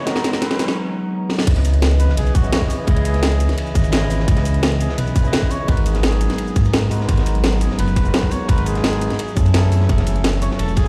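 A clear, vibrato-rich flugelhorn sings a dreamy, lush melody with tape echo over liquid drum and bass in C# minor at 171 BPM, supported by a barky, overdriven tine electric piano through a combo amp, a glassy, warbling FM pad with ensemble chorus and sidechain pumping, and a smooth gliding synth bass with tube saturation, while a cracking, up-front drum and bass kit with bright hats and a brief riser build toward the drop at 1.5 s, where a tight overdriven electronic kick and a gritty, dark breakbeat kit set back in the background join over a large studio reverb.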